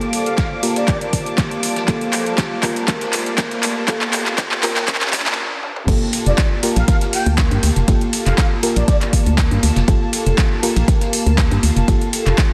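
A dense, heavily limited mix in a lush hall carries this smooth deep house section in G minor at 120 BPM, opening on a Gm9 chord with a build-up, drum fill and filter sweep. A hollow pad, a round FM electric piano with chorus and delay, a silky string machine, a moody ambient pad and a very quiet riser sit under a breathy flute-like lead with vibrato, while an overdriven deep house kit with metallic hats, a gritty, tape-toned sampler-style kit and a deep, up-front electronic kick drive the groove with a light swing. After a brief break at 5.4 seconds, the drop lands at 5.9 seconds as a dark, percussive organ-like FM bass enters, with the hollow pad and electric piano pumping against the kick.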